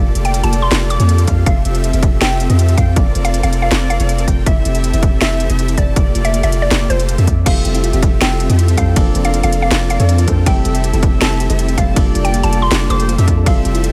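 Future bass with a lush, bright, half-time feel, this fragment of a longer piece opens on a huge, detuned supersaw riff, a deep, sine-toned 808-style bass and a woody, warbling mallet-like pluck melody with chorus and delay, while an airy, dreamy lead spins dub-echoed arpeggios in the background over a looping jazzy chord cycle. A trap kit with a sharp snare, crisp hats, crash and ride arrives at once, and a hard-clipped, tape-warm electronic kick sits up front from 1.3 seconds, while sidechain pumping breathes through the synths and bass. Around 7.4 seconds a clean tine electric piano through a combo amp joins in the background, along with a very quiet, dark, thumb-piano-like pluck playing arpeggios, all set in a digital ambience.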